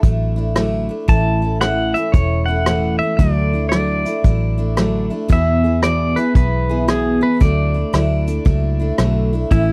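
A loping swung 4/4 at 114 BPM from a brushed drum kit with punchy kick, rim click and hi-hat, a round foam-muted vintage electric bass and a bright, full-bodied picked acoustic guitar sets up an easygoing, heartfelt honky-tonk groove in D lydian over Dadd9, A and E chords, with a twangy, clean pedal steel guitar carrying the melody with fingerpicks, slide and volume swells from 1.1 seconds in this dry, close 1970s-style studio recording cut from a longer piece.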